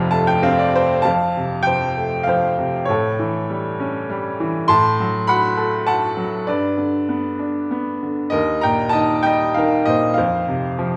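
A brilliant, woody upright piano with a vintage character and long sustain sits up front in this sunny, lyrical classical excerpt, played solo in a flowing triple metre with a free, rubato feel. After an opening fill that runs to 1.1 seconds, the harmony moves from F through A7, Am69, G and Eb before settling on an open F5, and another brief fill arrives at 10.8 seconds. A moderate, church-like reverb adds a gentle sense of space around the instrument.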